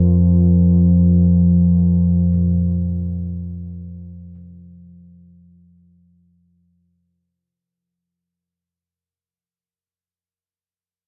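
A dark ambient drone fragment, ominous and cavernous, where a deep, rumbling, detuned drone sits up front with its own reverb until 6.6 seconds, a very quiet quartz singing bowl rings with slow beating, and faint bronze gamelan-type bossed gongs trace metallic arpeggios until 9.9 seconds, all bathed in a cathedral reverb as the whole passage fades out over its first 6.5 seconds.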